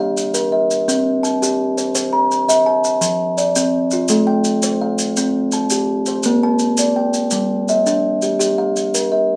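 A plucked kalimba opens this short excerpt of southern African traditional music, setting up a rippling, hypnotic mbira-style interlocking cycle in 12/8 at 112 BPM, counted in dotted quarters with a straight feel. Its arpeggios ring out across a broad span in a G equiheptatonic tuning, the thumb-plucked tones woody and solid with a boxy small-room character, placed up front in the mix. Maracas enter at 0.2 seconds and sit lower beneath it, their grainy, mellow shake sounding compressed and saturated. The harmony cycles through Gm, C, F, Am, C5 and Bb before returning to Gm near 7.3 seconds. A moderate studio reverb gives the pair a modest sense of space, and the piece runs to 9.4 seconds as a fragment of a longer work.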